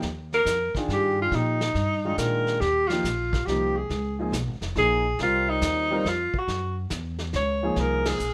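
Swinging in a three-beat waltz feel, this playful small-group jazz fragment places a clear, vibrato-tinged alto saxophone up front on the melody over warm concert grand piano chords with deep bass, a woody, growly pizzicato upright bass and a vintage brush kit with dark cymbals and a punchy kick, set in light reverb, before the band hits an accent at 8.0 seconds.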